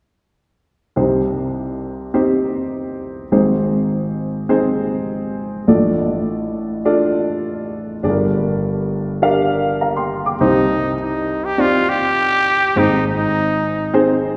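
Bathed in a lush concert-hall reverb, this short pop fragment in C minor moves at a driving 102 BPM in straight 4/4 with an earnest mood. A woody, natural upright piano sits up front from the start, carrying the harmony through Cm, Ab, Dm/A and Gm. At 10.4 seconds a raspy, gritty trumpet takes the solo melody, growling with light vibrato over the returning Cm and Ab.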